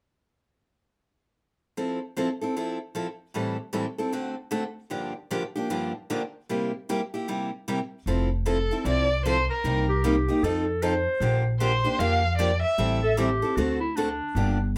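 Playful and lively, this swinging acoustic jazz manouche excerpt opens at 1.8 seconds with a bright, picked steel-string guitar laying down the chords alone, finger squeaks and fresh strings audible up front. At 8.1 seconds a woody, thumpy upright bass on gut strings joins, and a rich bowed violin soon carries the melody with vibrato and sliding portamento, set in plate reverb. A clear, punchy clarinet with a vintage jazz tone adds a second line from 9.9 seconds, the whole group sitting in a small, moderately reverberant room.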